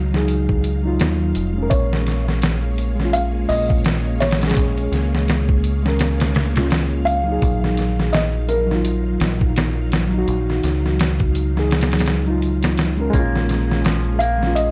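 A reedy electric piano, shaded by tremolo, tape echo and vintage 12-bit sampler grit, opens this dark, hypnotic trip hop excerpt over a Ebmadd9 chord, with a round, up-front fingered dub bass and mellow sawtooth string-machine cellos sustained with ensemble chorus in the background. A compressed, pitched-down sampler-style drum kit arrives almost at once, its thumpy kick, medium-tuned snare and hi-hat gritty and tape-toned, set in a swung 4/4 groove. At 1.7 seconds the harmony moves to Bbm7 and a felt-muted upright piano takes the melody, soft, intimate and short in sustain, trailed by dub echo. The kick drops out at 11.7 seconds, and from 13.1 seconds a bright, twangy clean electric guitar adds brief picked arpeggios, also carried on dub echo. The sound is dry and gritty with only light reverb, keeping the whole mix close.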